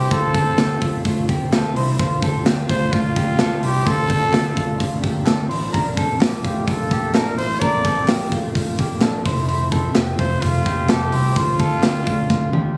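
A growling trumpet leads this restless, wistful stretch of jangly indie pop, its raspy, gritty tone carrying a light vibrato as it sings the melody up front between F4 and D5. Beneath it, a clean electric guitar spins arpeggios through a lush chorus, while a dark, foam-muted vintage bass keeps a round, punchy low end. A big rock drum kit drives the straight 128 BPM pulse in 4/4 with a punchy kick and a medium-tuned snare, joined by a very quiet, crisp group handclap that stays close and dry. Far in the background, a silky string machine holds slow-attack chords with a warbling ensemble chorus, moving from Dm7 to Fmaj7 at 9.3 seconds and back to Dm7 in D minor. Recorded on a phone in the room, with a club reverb, light reverb and compression, this cut from a longer piece closes with a drum fill at 12.3 seconds.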